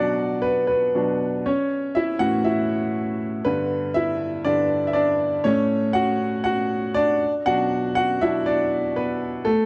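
A clear, woody upright piano plays alone and up front throughout this short pop fragment, moving through a bittersweet, earnest progression from Bm through A, G and F#m/A before settling back on Bm near 7.2 seconds. Its vintage tone sits in a dark production with a moderate plate reverb and a light swing on the sixteenths, giving the passage a smooth, warm quality as it cuts off at 9.7 seconds, lifted from a longer piece.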